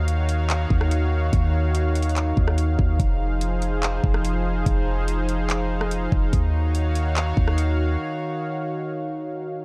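A dark, digitally ambient mix frames this ethereal, spacious cloud-rap hip hop excerpt at 144 BPM in a half-time feel in Eb dorian. A smooth, detuned sawtooth analog pad with chorus and sidechain pumping holds sustained chords moving from Ebm7 to Fm7 and back. Up front sits a deep, boomy sine 808 bass with a noise layer, fast attack and decaying tail, lasting until 8.0 s. A tape-tinged trap kit of knocking kick, bright hi-hat, handclaps and rim click plays until 7.7 s, before the pad carries the brief break to 9.6 s.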